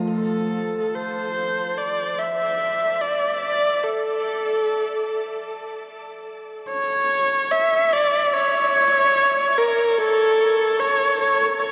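A warm, up-front electric violin fades in over the whole 11.7 seconds, singing a bowed, expressive melody with vibrato, soft attacks and portamento through diffuse ambient delay, while a bright, ringing Celtic harp sounds fingerpicked arpeggios only in the first 0.6 seconds, all bathed in a long shimmer reverb and the warbling pitch drift of worn cassette tape in this reflective, melancholic ambient fragment of a longer piece.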